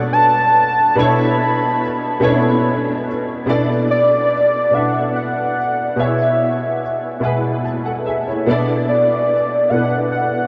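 Drenched in a huge ambient reverb with a long 7.2-second tail, this dreamy R&B excerpt moves in a slow, straight 6/8 at 48 BPM in B dorian, with a sultry, yearning mood. A velvety synth lead carries the melody between D5 and B5, its smooth sawtooth-and-triangle unison voice shaped by vibrato, portamento, chorus and analog delay. Beneath it, an intimate, up-front grand piano with audible action noise and ensemble chorus plays over Bm7, Bm11 and B13sus4 harmonies, adding a fill from 7.2 to 8.5 seconds before the chords return to Bm7.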